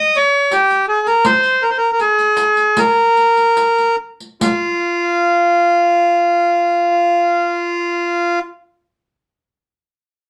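In a straight 4/4 at 70-84 BPM that slows through the first 4.4 seconds, this short cut from a longer Arabic maqam ensemble piece has a longing, hypnotic mood, tuned to A4 = 436 Hz. A reedy, full accordion carries the melody between F4 and Eb5, close-miked, dry and up front. A riq with bright jingles and hard hands adds percussion until 4.8 s, all set in a moderate small room.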